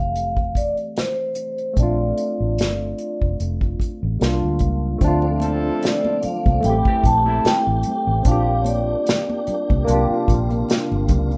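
R&B and neo-soul at 74 BPM in D minor, this sultry, introspective passage cut from a longer piece sets a mellow, ringing vibraphone melody played with soft mallets over a barky tine electric piano through a combo amp with chorus, a round, foam-muted vintage bass and an airy, polished acoustic kit played with bundle sticks, the bass and drums sitting up front. At 5.0 seconds the harmony moves to Dm9 as a lightly overdriven tonewheel organ with key click and slow rotary speaker enters beneath and thin-skinned, high-tuned congas sit in the background, and from 5.4 seconds a tight vintage horn section adds jazz-style stabs with light vibrato. The rough home demo mix sits in a moderate studio reverb, with plate reverb on the vibraphone, electric piano and horns.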